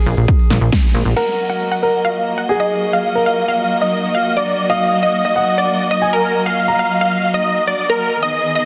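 Uplifting trance at 136 BPM in 4/4, driving and bittersweet, in Eb harmonic minor, cut from a longer piece. A dark, mellow concert grand piano with delay carries a second line through to 8.1 seconds, while a brief burst of punchy, funky analog bass, an overdriven electronic kick and a big-room dance kit with crisp hats, crash and snare hit with sidechain pumping in the opening moments, with a band accent at 0.7 seconds. At 1.2 seconds the harmony settles on Ebmadd9 as a huge, thick, detuned supersaw takes the melody, pumping with sidechain and drenched in dub echo, its low-pass filter sweeping until 8.7 seconds. A very quiet, round analog pluck shares the same register as a second line, and a rich, lush string section holds sustained chords, up front yet distant in character, with its own pumping. The mix sits in a lush hall reverb and is heavily limited, dense and modern.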